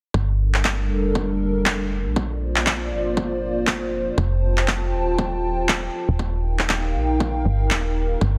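This cut from a longer afro house track opens at 0.1 s with an overdriven, deep, layered electronic kick drum alongside a soft, round FM bass that sits up front with a woody, mellow tone, a fast attack and decaying notes. At 0.5 s a dark analog pad enters with sustained chords and a slow attack, its detuned square, sawtooth and triangle waves, sub octave and wave-folding giving it a moody body, treated with chorus and with sidechain pumping that the bass shares. Electronic handclaps arrive at the same moment, tape-tinged and forward in the mix, set in small room ambience. The harmony moves from Gmadd9 to Bb6, Fadd9 and Eb over a swung sixteenth-note feel in 4/4, and the mood is driving and hypnotic. Light digital reverb surrounds a dense, heavily limited modern master.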